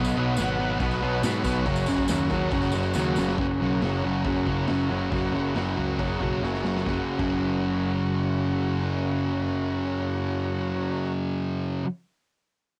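A cassette home recording with light reverb carries this swaggering, rowdy garage rock excerpt in F# major at 138 BPM, where an up-front, double-tracked fuzz guitar riff leads over a growling, overdriven picked bass, a buzzy combo organ holding heavy-vibrato chords in the background, a jingly tambourine that drops out at 3.3 seconds, and a boomy, tape-saturated drum kit with dark cymbals that enters at 0.4 seconds, adds fills at 3.0 and 6.4 seconds, and stops at 7.3 seconds.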